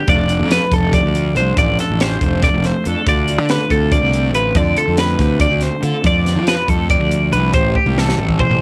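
Intricate and restless, this short math rock and midwest emo excerpt races at 282 BPM in 7/8, with a bright, twangy twelve-string electric guitar spinning up-front arpeggios over a dark, phased mellow electric guitar in the background, a round, fuzzed fingered bass driving low and punchy, and a crisp fusion kit with a high-tuned snare and cassette-tape colouring that closes on a drum fill at 7.8 seconds, all moving through F6, Dm7 and Am7 in a dry home cassette recording.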